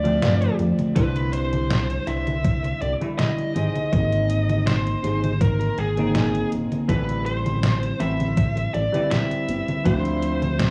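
Woozy and nostalgic, this vaporwave fragment drifts at 81 BPM with a light swing, moving through Dm9, Cmaj9, Abmaj7 and Am9 over worn, warbling cassette tape with pitch drift and light reverb, as a clean electric guitar fill opens the first second. A bluesy, distorted lead guitar carries the picked melody through 12-bit sampler grit and tape echo, over a bell-like tine electric piano bathed in lush chorus and analog delay, a glossy, dark chorused synth bass with tube saturation, and a fingered semi-hollow guitar riff tucked in the background. An overdriven, detuned 8-bit drum machine supplies congas, hi-hat and a fat snare, joined at 1.0 s by a thumpy electronic kick that stands forward until 10.0 s.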